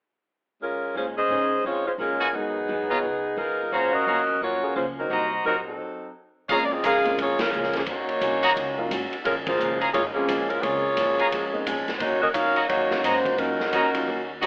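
Swinging and dramatic, this big band swing excerpt in Bb minor at 174 BPM puts a tight, smooth-topped saxophone section up front on the melody, with bright trumpet stabs from 2.2 s, over a background of picked steel-string acoustic guitar, open baby grand piano and woody pizzicato upright bass, while a distant, roomy drum kit with a punchy kick enters at 6.5 s after a brief stop, the mix carrying a telephone-like tone and moderate large-studio reverb.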